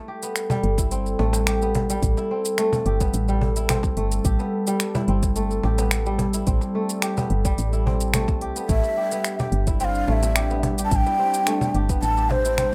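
A straight, steady 4/4 groove from a deep house drum kit with finger snaps, smooth hi-hat and shaker, a deep electronic kick and a hard-handed, band-limited cajon sets a meditative, earthy organic downtempo mood in this fragment of a longer piece. A fingerpicked, ringing kora plays arpeggios through digital delay over a warbling, nostalgic pad holding an Am7 chord with chorus, phaser and sidechain pumping, while a round, dark FM bass with a woody tone sits up front and pumps along. At 8.7 seconds a breathy, hollow ney enters with a close, vibrato-laden melody through delay, before the rough, home-demo mix fades out from 11.7 seconds.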